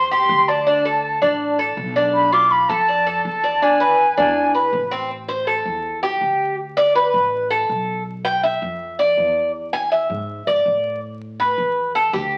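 An airy, reedy concert flute carries a close-miked, vibrato-tinged melody up front for the first 4.5 seconds of this danceable Cuban son and guajira excerpt in A minor at 162 BPM, while a bright, metallic Cuban tres picks double-string arpeggios throughout and takes a solo from 5.1 seconds over chords such as Bdim and E7, a woody, thumpy pizzicato upright bass on gut strings lies low and dark underneath, and wet studio reverb with the crackle of a very old 78 rpm record gives the recording a vintage patina.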